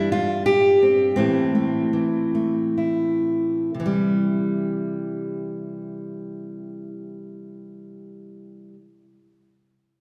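Bathed in a wet concert hall reverb yet sitting up front, a lone fingerpicked steel-string acoustic guitar with fresh strings and audible finger squeak plays a hopeful, nostalgic folk passage in 3/4 and C major, moving from C/G to Am while slowing down over the opening 3.8 seconds before settling back on C, in this short cut from a longer piece.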